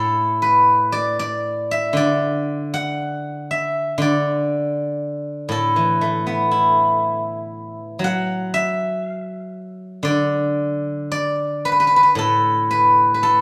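In a free, rubato pulse around 58 BPM in 4/4, this short passage of Chinese traditional solo plucked strings unfolds in a flowing, pastoral mood in the D gong mode. A lone steel-string zither, played with fingerpicks, sits up front and spans A2 to F#5 with a silvery, ringing tone across the full 13.4 seconds. A moderate recital-hall reverb of about 1.6 seconds lets each note bloom into the space.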